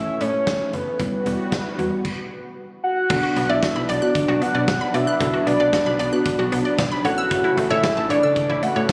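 Synth-pop in B minor at 114 BPM, melancholic and nocturnal, this excerpt from a longer piece sets a round, up-front octave-layered synth lead with chorus, phaser and digital delay over muted felt-like keys, a thick warbling unison pad, a snappy slap-like FM bass and a huge, punchy arena drum kit entering at 0.2 seconds, with a brief stop at 2.0 seconds before a squelchy, resonant blip pluck adds arpeggios from 3.1 seconds as the chords move from A and Emadd9 to Bm, all heard through light reverb and small-room ambience with a phone-recorded quality.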